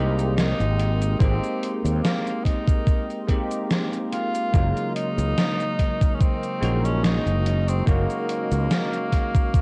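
A slow 72 BPM groove in 4/4 with a gentle swing on the sixteenths sets up this woozy, dreamy vaporwave fragment in Ab major, cut from a longer piece. A gated 80s drum machine enters at 0.2 s with cabasa, hi-hat and a gated-reverb snare, tape echo trailing behind, and a thumpy electronic kick joins up front at 1.2 s. A growly, bright fretless electric bass with tube saturation sits forward in the mix, while a barky, bell-like tine electric piano carries the accompaniment through ensemble chorus, 12-bit sampler grit and tape echo. Over this, a clear tenor saxophone with light vibrato and a smooth top sings the melody in a classical style, and a very quiet, warbling tape-like pad holds detuned, nostalgic chords high above. The harmony moves from Abmaj9 to Gb6 at 4.5 s, and the whole mix is echo-heavy with light digital ambience and a cassette-tape haze.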